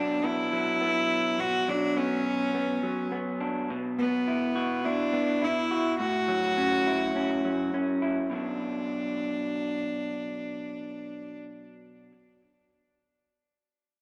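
Brooding yet cathartic, this short rock passage in B minor moves at a straight 104 BPM in 4/4 and is cut from a longer piece. A bowed solo cello carries the melody, its tone clear and earthy with a smooth top, sitting up front and touched by tape echo until about 11.4 seconds. Beneath it, a fingered electric guitar through a small old amp plays arpeggios that sound slightly broken-up, lo-fi and compressed, also close in the mix and colored by spring reverb and tape echo, ringing on until 12.1 seconds. The harmony moves from Bm through Esus2/B and A6, then returns to Bm at 8.3 seconds as a second section begins. A moderate large-studio reverb gives the pair a roomy, spacious setting.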